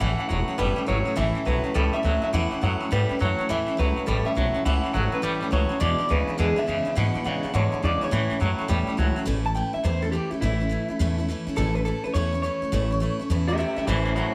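A woody, thumpy pizzicato upright bass sits up front in this upbeat, rollicking, swung rockabilly excerpt, joined by a bright, full-bodied picked steel-string acoustic guitar, a slightly broken-up, lo-fi electric guitar carrying the melody through spring reverb and analog delay, and a twangy electric guitar riff with harmonic tremolo that drops out at 9.3 s as a clean electric guitar solo begins, then returns at 13.9 s, with light reverb over the ensemble.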